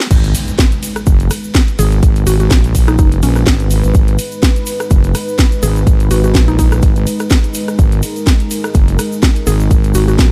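A heavy, saturated wobble bass anchors this swaggering, aggressive bass house drop in G# minor at 125 BPM with a 16th-note swing, riding over a punchy, up-front electronic kick and a house kit of cracking snare, metallic hats, ride, crash and rim click, while a deep, detuned analog pad holds a G#m chord beneath. A grainy egg shaker sits in the background throughout, an electronic impact lingers behind until 2.0 s, and a woody, round mallet-like pluck with digital delay carries the melody from 1.8 s in a dry mix.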